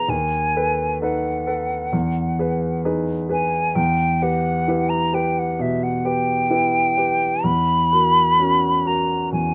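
Close, detailed microphones capture this short romantic classical passage in a dry space with little reverb, so both instruments sit up front. A hollow concert flute carries the lyrical, tender melody in its upper register, its pure tone shaded with vibrato and clearly tongued notes. Beneath it, a grand piano supplies a warm, natural-sounding accompaniment with a deep bass. The two play together from the opening to 9.5 seconds in a gently rubato 4/4, moving from B7/D# through Emaj7 to a darker Em before settling on F#7/E at 7.5 seconds. The fragment is cut from a longer piece.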